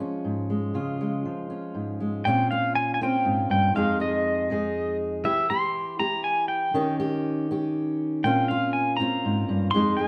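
A clean, compressed pedal steel guitar carries the high melody from 2.3 seconds, its slide and volume swells sitting up front over a fingerpicked steel-string acoustic guitar that opens alone and lays down the accompaniment. This melancholic, reflective folk piece moves at 120 BPM in a straight 3/4 through a progression starting on Db and settling on Bbmadd9. A wet studio reverb and a slightly distant room perspective give the warm sound some air, and the passage is cut from a longer piece.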